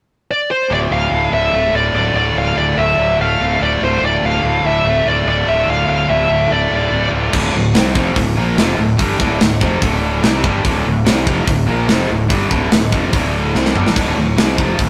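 Relentless and aggressive, this heavy metal passage at 145 BPM in D minor opens with an up-front, distorted lead guitar carrying a high melody with tape echo until 7.1 seconds, while two bright, scooped high-gain rhythm guitars churn a riff over a growly, punchy fuzz bass, all entering at 0.7 seconds on a Dm chord. At 7.3 seconds a tight, saturated metal drum kit crashes in with crash, hi-hat, kick, snare and toms, gritty and forward in the mix, and adds a fill at 13.6 seconds. The whole thing sits in a rough rehearsal-room recording with moderate stone-room reverb, cut from a longer piece.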